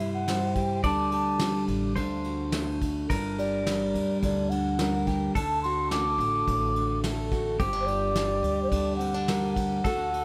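In a booth with a moderate, short ambience, this wistful, intimate acoustic folk excerpt in G harmonic minor moves at 107 BPM in a straight 4/4, with an airy clay alto ocarina carrying the vibrato-laced melody through plate reverb, a twangy, bright pedal steel guitar adding a compressed second line with slide and volume swells, an up-front fingerpicked steel-string acoustic guitar giving warm accompaniment over chords that drift from C through Dsus4 and D to G minor, a woody, thumpy pizzicato upright bass on gut strings underneath, and a distant, roomy brush kit with a fat snare and punchy kick.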